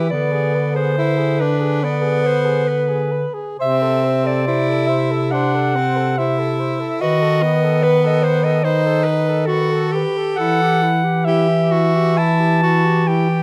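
Rubato pulls the beat unevenly around a slow 70 BPM in 4/4, giving this classical piece for single-reed quartet an elegiac, yearning character in E minor. A close-miked clarinet carries the melody throughout the 13.4 seconds, its clear tone ranging between A4 and A5. Beneath it, the alto saxophone sings a softer second line with light vibrato. The tenor saxophone sits up front as accompaniment, its warm sound also shaded by light vibrato, while a mellow, up-front bass clarinet anchors the low end. The harmony moves from E7b13 over D through A minor over C and B7 over D sharp before settling on E minor at 10.4 seconds. A moderate recital hall reverb surrounds the ensemble in this fragment cut from a longer piece.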